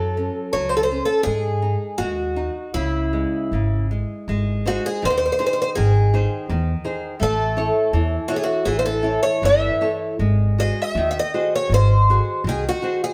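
Longing and passionate, this fado-style ballad unfolds in a rubato 2/4, with the whole band playing together in a stone room whose moderate reverb lends the strings a natural halo. A picked twelve-string acoustic guitar carries the melody up front, its shimmering, octave-doubled tone sounding woody and boxy, with the worn character of old strings. Beneath it, a small, bright nylon-string guitar is fingerpicked as accompaniment, while a pizzicato upright bass on steel strings sits forward in the mix with a woody, warm weight. The harmony moves from F#m through C#m before a new passage begins at 4.3 seconds, turning from G# to A and settling on G#7. The bass drops out at 12.7 seconds, leaving the two guitars to ring on briefly in this short fragment of a longer piece, tuned to A4 = 436 Hz.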